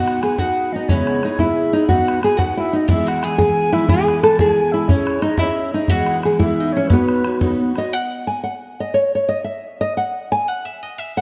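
In a lively, rollicking 6/8 jig at 119 BPM in B major, a dark, woody nylon-string guitar carries the melody up front while a reedy wooden flute with delay adds an airy second line, a bright fingerpicked steel-string guitar with analog chorus accompanies, and a tight, damped bodhran drives the rhythm, all three dropping out between about 7.6 and 7.9 seconds to leave the nylon guitar alone until 11.2 seconds in a dreamy, reverb-soaked hall sound cut from a longer Celtic folk piece.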